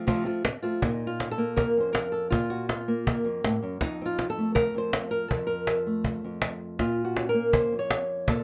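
A fingerpicked flamenco guitar leads this short cut from a longer flamenco piece, carrying the melody from F2 up to Db5 with a warm acoustic tone and audible finger squeak, placed up front from 0.0 seconds. A cajon joins at 0.1 seconds, snappy and buzzing with its snares, struck with hard hands and sitting close in a small-room sound. The tempo is a brisk 161 BPM in a straight 4/4, and the mood is both fiery and mournful. The harmony moves from F to Bb5, back to F, and then darkens onto Bbm. Close, detailed microphones and light reverb keep the guitar and cajon intimate and present.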